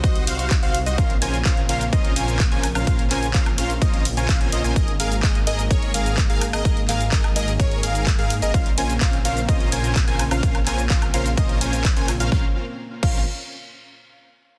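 A heavily limited modern master with light digital ambience carries this emotional, powerful festival progressive house drop in Bb minor at 127 BPM, where an overdriven, punchy electronic kick sits up front over a big-room dance kit with a huge snare, handclaps, hi-hat, ride, crash, shaker and woodblock, joined by a thick detuned saw bass with chorus, a dense compressed supersaw riff, a catchy plucky unison lead playing arpeggios through tape echo, and a warbling vintage pad holding sustained chords in the background, with every part except the drums pumping to the sidechain until the pad drops out at 12.5 seconds.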